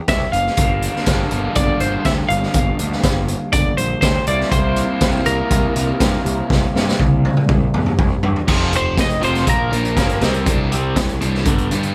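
Upbeat yet wistful, this indie rock excerpt moves at 122 BPM in a straight 4/4, moving from C and Gm7 to C7 before shifting to F, Bb and Csus2. A bright, twangy twelve-string electric guitar carries the clean, compressed melody with a slapback echo, and it drops out at 10.9 seconds. Underneath, a fuzz-drenched picked electric bass adds overdriven weight. Two overdriven guitars sit in the background: a raw garage guitar plays a picked riff, and a dark, sludgy guitar plays a picked riff of its own with a lush chorus. The raw garage drum kit sits up front with a gritty, saturated small-room sound, a high-tuned snare, a boomy kick and a rolled-off top, and it plays a fill from 6.5 seconds. At 8.5 seconds a clean electric guitar solo begins, all under a light reverb.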